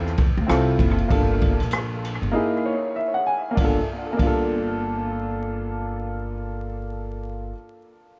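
A clear, smooth upright piano with dub echo accompanies this cool, nocturnal jazz-hop excerpt at 97 BPM in G dorian with swung 16ths, playing a fill through a silent gap from 2.3 to 3.6 seconds over Dm9, Gm7 and A#m7b5 chords, while a distant, roomy jazz drum kit with dark cymbals and a boomy kick plays hi-hat, ride and rim clicks until 4.4 seconds and a thumpy, woody pizzicato upright bass sits underneath, in an echo-heavy mix washed with spring reverb and vinyl crackle.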